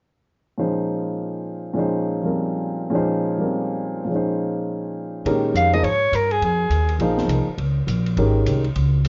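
Modal jazz in Bb dorian at a brisk 205 BPM with a swung 4/4 feel, this hypnotic, intense fragment of a longer piece opens at 0.6 s on an intimate, woody upright piano voicing a Bbm11 chord, its vintage tone carrying long sustain and audible action noise. At 5.2 s a thumpy, gut-strung pizzicato upright bass arrives up front, joined by a dark small-room drum kit of hi-hat, ride and high-tuned snare, while a soprano saxophone with light vibrato plays a brief, distant-sounding solo line from 5.6 s. The whole recording sits in moderate studio reverb and has the muffled, warbling pitch drift of worn old cassette tape.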